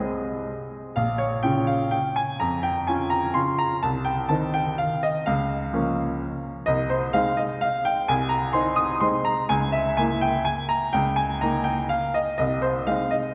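A classical piano waltz in triple time, this short excerpt from a longer piece has a sparkling, playful mood, its beats uneven and stretched with rubato. A solo baby grand piano carries the whole 13.3 seconds, its tone brilliant yet slightly worn and natural, placed up front in the mix. The playing spans a broad range, from deep bass notes to gleaming high treble. A lush church reverb with a long tail of 3.2 seconds surrounds the instrument, giving the sense of a large church or concert hall. The harmony moves through gently colored chords, including a minor sixth and a diminished sound, before settling back home on the opening chord.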